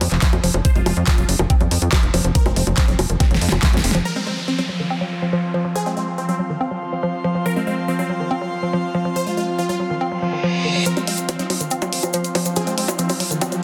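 Psychedelic trance at 141 BPM in F phrygian, alien and hypnotic, this excerpt opens with an overdriven, knocking kick, a huge-snared dance kit with bongos, claps and hats, and a tight, punchy sequencer bass driving under a woody wave-folded pluck riff, a bright detuned supersaw stab melody with phaser and tape echo, and an evolving wavetable pad pumping in the background. After a drum fill and accent near 3.9 seconds, the beat drops out at 4.1 seconds, leaving the pluck, the stab and the wavetable pad alongside a breathy, airy pad, a filter-swept arpeggio and a downlifter, reverse cymbal and riser sweeping toward the build. At 10.9 seconds the kit returns with a grainy cabasa and a very quiet metallic wobble bass as the build-up unfolds inside a lush hall reverb and a dense, heavily limited master.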